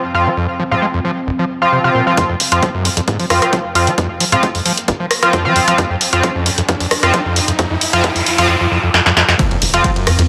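A screaming, squelchy acid line sits up front in this driving peak-time techno cut, its resonant, distorted sawtooth riff running from 0.1 to 10.2 seconds, with chorus and digital delay, and pumping against the beat. Beside it, a bright sync-sweep polysynth fires edgy, nasal stabs, while a deep, moody ambient pad drones in the background at the very start and briefly near the end. At 133 BPM in a straight 4/4, an industrial, relentless groove takes hold at 2.2 seconds as a punchy analog drum machine arrives with hi-hat, ride, rim click and snare, re-recorded in a large room and placed up front, joined by an electronic kick. A tight, saturated sequencer bass, sawtooth and square with ring modulation and a plucky filter, drives underneath from 2.4 seconds, sitting dark and low in the mix. The passage is a build-up, with a background riser, a noise sweep and a drum fill leading to an impact at 9.4 seconds, all bathed in a moderate, lush hall reverb, in this section cut from a longer piece.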